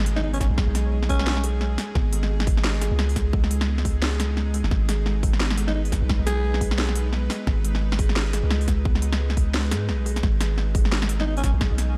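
A faint electronic impact opens this dark, spacious half-time drum and bass excerpt in G# minor at 174 BPM, as a deep, sine-like 808-style bass sits up front, a tense, string-like bowed drone hangs in the background with built-in reverb and sidechain pumping, and a buzzing kalimba plucks woody, hollow-box arpeggios through a delay. A layered kit of cracking snare and crisp hi-hats, swung on the 16ths, comes in at 0.1 seconds, and the electronic kick drum follows at 0.4 seconds, tight and tape-tinged. A growling alto saxophone, close-miked, breathy and raspy in a jazz style, carries the melody in short solo phrases, first at 0.2 seconds and again near 5.7 seconds, each trailed by tape echo. The kalimba's mellow, ringing tone contrasts with the sax's gritty subtone, while the slow-attack drone adds a wave-folded, vibrato-laden haze beneath. Light reverb and digital ambience give the dark production an open, shadowy feel.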